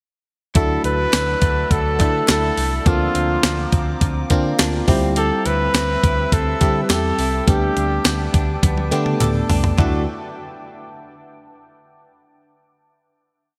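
A romantic, nostalgic 1980s-style pop chorus at 104 BPM opens at 0.6 s with a close-miked flugelhorn carrying a motif-based melody with light vibrato and delay. Beneath it, a bell-like FM electric piano pushes close-voiced chords, a dark hollow-body picked bass drives eighth notes with slides, and a compressed direct-recorded clean guitar rolls a fingerpicked riff in the background, all over a thumpy, up-front 12-bit drum machine with a big backbeat. Very quiet, crisp handclaps on the backbeat join at 1.1 s, and an ethereal, glassy FM pad enters at 1.2 s as the chords move through Dadd9, Bbadd9/D, C/D and Gadd9/D. After a drum fill the piece rests on a final Dadd9 chord at 9.8 s, set in a lush hall reverb with a bright digital sheen.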